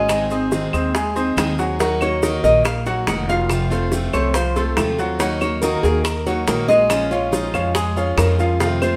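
A live band plays in a reverberant stone room in this sultry cut of Cuban son and guajira in 4/4, taken from a longer piece. A full-bodied, fingerpicked nylon-string guitar carries the melody with audible finger squeak, over a picked plugged-in steel-string acoustic guitar, arpeggios from a brilliant baby grand piano with long sustain, and a dark, thumpy pizzicato upright bass up front. Tight, high-tuned bongos, woody claves and grainy, saturated maracas sit in the background, and a fingerpicked flamenco guitar adds a second line from 7.1 s to 8.5 s.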